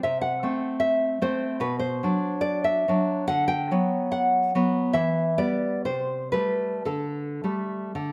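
Melancholic and intimate, this short excerpt from a romantic piece for solo classical guitar moves in a slow, rubato 2/4 at around 54 to 76 BPM, tuned to A4 = 439 Hz. A single fingerpicked nylon-string guitar sits up front with a dark, full-bodied tone, ranging from B2 to G5 as the harmony moves from Am/C through Bm and Em7 to a closing Dsus4 at 6.9 seconds. Moderate recital hall reverb surrounds the playing with a sense of space.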